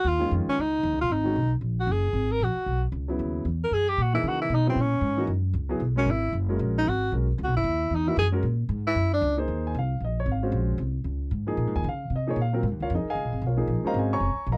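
A brisk swung 4/4 at 229 BPM drives this intense, hypnotic modal jazz excerpt, cut from a longer piece, with a woody pizzicato upright bass and a dark, mellow grand piano, its action noise audible, carrying the pulse throughout. A roomy tenor saxophone with vibrato takes the solo over suspended chords moving from Eb9sus4 to F#9sus4 and an A#7alt, dropping out at 9.4 s. The groove then settles into Eb dorian for the bass and piano in a dry, close 1970s-style studio sound.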